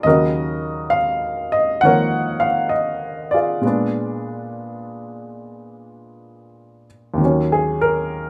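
Solo jazz on a dark, intimate baby grand piano, cool and swinging at an unhurried pace, moves from Ebm7 through Bb7b9 and back to Ebm7 in a short cut from a longer piece, its mellow, short-sustained tone sitting up front with audible action noise in a moderate studio reverb.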